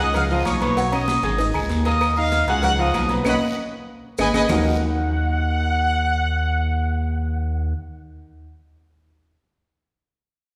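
A driving straight 4/4 salsa groove opens this passionate fragment of a longer piece, built from a dense Latin percussion bed: high-tuned congas with a thin skin and soft hands, ringing metal-shelled agogo bells and timbales, low-tuned cowbell and bongos played with hard hands, woody claves, a raspy guiro and grainy maracas, mostly sitting in the background. Up front, a growling, thick FM bass holds the low end with a fast attack and sustained notes. A tight trumpet section with vibrato carries the melody in a pop style, sounding distant and roomy even as it sits forward in the mix. A brilliant baby grand piano supplies the accompaniment through the chords, with a band accent and a drum fill marking the turn into the second section, after which the percussion drops out at 4.6 seconds. The trumpets and bass carry on until 7.7 seconds, leaving the piano to ring until 8.4 seconds in a lush recital-hall reverb.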